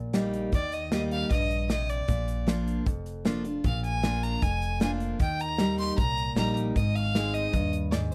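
A picked steel-string acoustic guitar and a woody, pizzicato upright bass open this short honky-tonk and classic country excerpt at 154 BPM in a straight 4/4, joined almost at once by a natural country drum kit with a punchy kick, medium-tuned snare and hi-hat. At 0.5 s a clear, up-front fiddle takes the melody, bowed with light vibrato and a slapback echo, over full-bodied guitar accompaniment and chords moving through Eb, Bb, Eb and Ab in Bb mixolydian. The mood is nostalgic and down-home, captured as a dry, close 1970s-style studio recording with little reverb.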